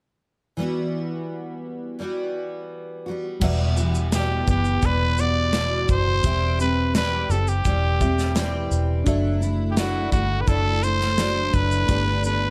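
A small room gives this tender, wistful acoustic pop cut in E minor an intimate feel, opening on a bright, full-bodied, double-tracked steel-string guitar picked up front at 85 BPM in a straight 4/4. At 3.4 seconds a punchy studio drum kit with kick, snare, shaker and crash arrives alongside a dark, round, foam-muted electric bass and a worn, slightly out-of-tune reed electric piano, lightly overdriven and sitting in the background. From 4.1 seconds a raspy, growling trumpet with vibrato takes the solo melody over chords moving from Emadd9 through C/E and Dadd9/F# to Gadd9.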